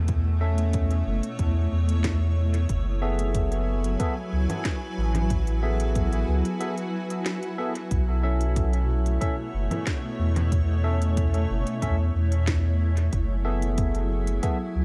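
A dark, warm production with light reverb frames this hazy, peaceful stretch of ambient dub, cut from a longer piece and moving at 92 BPM in a straight 4/4 over a single F#m11 chord. A granular cloud pad holds sustained chords throughout, its blurred, evolving texture rising slowly and lingering with a long release inside its own built-in reverb. Beneath it, a soft dub sub bass sits up front, deep and round with a fast attack, while a layered electronic kick adds a tape-warm thump. An organic electronic drum kit of congas, smooth hi-hat and a woody snare, re-recorded in a large room, sits low in the mix with dub echo trailing its hits. A bright, barky tine electric piano plays clean stabs from 0.4 seconds, touched by subtle chorus and its own dub echo, and a brief break arrives from 6.6 to 7.9 seconds.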